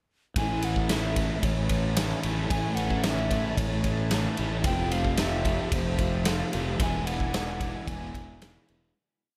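Hazy and blissful, this brief shoegaze and dream pop rock piece moves at 112 BPM in a straight 4/4, set in A major and tuned slightly low to A4 = 439 Hz. A mellow, pure silver concert flute carries a motif-based melody of song-like phrases with vibrato and tongued notes, heard close-miked and trailed by tape echo. Beneath it, two overdriven semi-hollow guitars sit in the background. One strums chords with whammy-bar dips through subtle chorus, while the other lets chords ring out, bathed in reverse reverb. A lush, detuned sawtooth unison pad with a slow attack sustains chords under chorus, and a growly fuzz bass plays a dotted figure as an up-front arena drum kit with punchy kick, medium-tuned snare and ride cymbal drives a big rock groove. The harmony moves from Amaj7 to Fmaj9 at 4.7 seconds and on to E7 at 6.8 seconds, where the piece begins its fade-out, set in light reverb and small room ambience.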